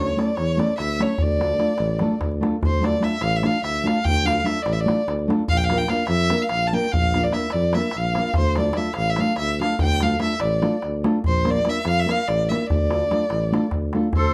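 Balkan wedding-band folk in a bittersweet, restless D minor, moving in 7/8 at 292 BPM counted in eighths, with a dark, bowed solo violin up front, singing with vibrato and portamento through a plate reverb, over a full-bodied, thumb-plucked nylon-string guitar with audible finger squeak, a mellow tuba bass with light vibrato, and a deep, saturated clay-shell darbuka, before a reedy, shimmering musette accordion slips in at 14.2 s just as this cut from a longer piece ends.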